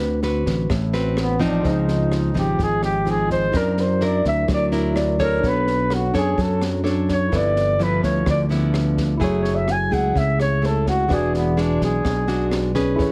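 Bossa nova in a relaxed, sophisticated mood, with a breathy, whispered flugelhorn carrying the melody from 1.2 seconds with light vibrato and plate reverb over fingerpicked nylon-string guitar with audible finger squeak, a round, punchy fingered electric bass, a dark small-room jazz kit of kick, rim click and high-tuned snare, and a barky tine electric piano sitting in the background from 1.6 seconds, all heard through a heavily compressed, radio-like sound with light reverb.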